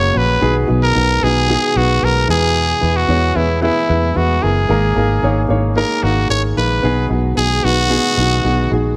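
Hopeful and anthemic, this 9-second pop fragment in B major moves at a straight 112 BPM in 4/4, cut from a longer piece and set in light reverb with a faint mains hum beneath it. A raspy, growling trumpet carries the melody up front with brilliant punch and light vibrato, while a dark baby grand piano adds mellow, intimate accompaniment with audible action noise and short sustain. A foam-muted, round electric bass anchors the low end, and a very quiet tonewheel organ holds clean, sustained chords with chorus vibrato through a progression of B6, E and G#sus2.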